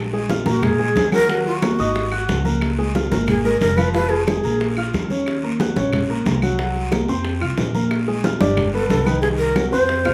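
A dark, thumpy pizzicato upright bass opens this driving, sophisticated Afro-Cuban jazz excerpt in Bb minor at 181 BPM, joined at once by an up-front grand piano, ringing soft-handed congas, tight high-tuned bongos, raspy guiro and woody background claves in a club-like room, while a breathy, mellow bamboo shakuhachi with vibrato and tongued notes carries the melody through plate reverb from 0.5 seconds, falls silent at 4.9 seconds and returns at 8.4 seconds over a harmony that moves through Ebm7 and Gbmaj7#11/C to a closing Cm7b5.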